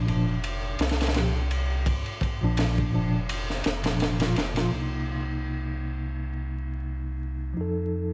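A mellow tine electric piano provides the accompaniment in this smoky, hypnotic trip hop excerpt at 84 BPM with a light 16th-note swing. Its tremolo, tape echo and 12-bit sampler grit color chords that move from Bb to Cm7 and F7 as the music settles into C dorian at 4.7 s. Beneath it, a round, sine-like sub bass with tube saturation sustains deep notes, while a crunchy, up-front breakbeat kit with a punchy kick, high-tuned snare and dark ride cymbal plays until 4.7 s, its kick dropping out from 3.3 s, all in a dry room laced with vinyl crackle.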